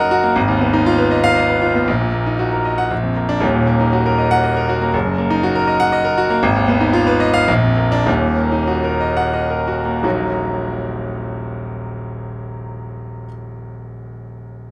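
Set in light reverb, this intimate, up-front recording of a solo grand piano, its action noise audible and its notes carrying long sustain, captures a stormy, agitated classical virtuoso study in a rubato triple metre, cut from a longer piece, that spans the deep bass into the treble, slows from 5.7 to 10.0 seconds and then moves into a new section at 10.0 seconds.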